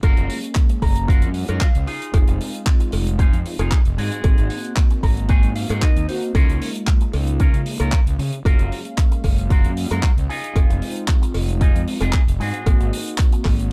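Nu-disco cut from a longer piece, sunny and groovy, where a punchy layered electronic kick and an overdriven fuzz bass sit up front beneath a tight small-room funk kit with handclaps and hi-hat, a dry cowbell in the background, an envelope-filtered electric guitar riff drenched in lush chorus, mellow, dark synth brass carrying sidechain pumping, a cassette-tape effect and slapback echo over a Gbmaj7, Fm7, Ab7, Db6 progression, and brief clean electric guitar fills at 0.6 and 4.8 seconds.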